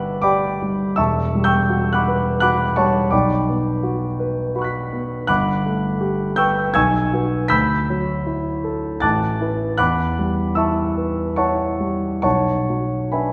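Impressionist classical solo piano in B minor, this nocturnal, hazy excerpt drifts in a rubato 3/4 between 67 and 86 BPM, its warm concert grand pairing deep bass and an open, long-sustaining tone that sits up front while a wet scoring-stage reverb, heard from further back in the room, blurs lush chords such as Gmaj7, Em9 and Bmadd9 before settling on Bm6 at 12.2 seconds.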